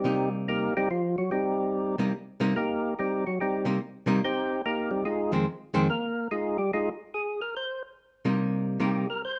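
Jazz with a late-night, bluesy mood at a swung 144 BPM in C minor, where a fat, lightly overdriven tonewheel organ takes the melody up front with percussive third-harmonic attack, vibrato and a slow rotary speaker bathed in plate reverb, while a clean, dark, hollow-body archtop guitar accompanies over a Cm7 to Fm7 progression in this warm, moderately reverberant short fragment.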